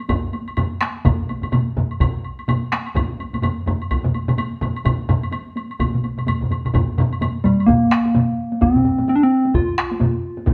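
Driving and powerful, this Japanese traditional taiko drum ensemble piece is cut from a longer performance and gradually speeds up, with a swung sixteenth-note feel in 4/4. Four taiko ensemble parts play together throughout: one has a vintage, band-limited character, another sounds set in a small room, a third is close and hard-hit, and the fourth uses heavy sticks in a live room. A woody, close and dry woodblock plays along with them until it drops out at 7.7 seconds, where the piece moves into a new section. Just before, at 7.4 seconds, a soft struck FM synth lead enters up front with the melody, its round, keys-like tone bright and gently decaying, warbling with chorus and tremolo. The whole group sounds as though it is playing live in one room, wrapped in a wet studio reverb.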